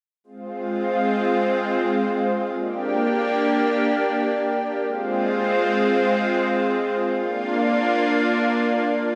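A lush, detuned unison pad of sawtooth and square waves sits up front from 0.2 seconds, holding sustained chords with a slow attack, long release and a bright chorus shimmer. This cinematic, driving synthwave fragment, cut from a longer piece, moves through Fm, Gm, Fm and Bb before ending at 9.2 seconds. A wet plate reverb with a 3.6-second tail and bright 1980s-style digital production give the sound its gleaming polish.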